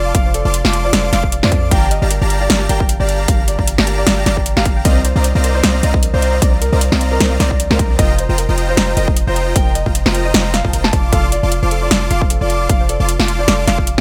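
Future bass at 153 BPM in a half-time feel with a light swing on the sixteenths, this lush, dreamy fragment of a longer piece sits in C dorian and moves through Dm7/F, Gm7, Cm11 and F9sus4 before returning to Dm7/F at 10.9 seconds. A dark, mellow baby grand piano carries the melody through sidechain pumping and dub echo, while huge, detuned supersaw chords with a bright, sustained edge play a pumping riff across a broad range. Behind them, an airy lead with vibrato and portamento spins arpeggios high in the background, also treated with chorus and dub echo, and a very quiet, round pluck adds its own soft, decaying arpeggios. Down low, a deep, boomy 808-style bass sits up front and pumps with sidechain compression. The punchy electronic kick and a big-room dance kit with a punchy snare and metallic hats enter at 0.1 seconds, all set in a light reverb.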